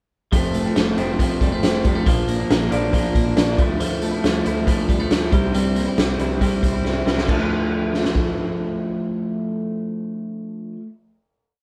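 A wistful, restless piece of jangly indie pop in D minor at 138 BPM opens at 0.3 seconds with the whole band playing live in one lightly reverberant room: a slightly broken-up, lo-fi electric guitar through a small old amp drives barre-chord strumming up front, a bright, twangy twelve-string electric guitar rolls fingerpicked arpeggios, a round, foam-muted vintage bass pushes eighth notes, and a raw garage kit with a punchy kick, fat snare and rolled-off top keeps a brisk backbeat until a drum fill at 6.8 seconds leads into a final Dmadd9 chord that the guitars hold until nearly 11 seconds.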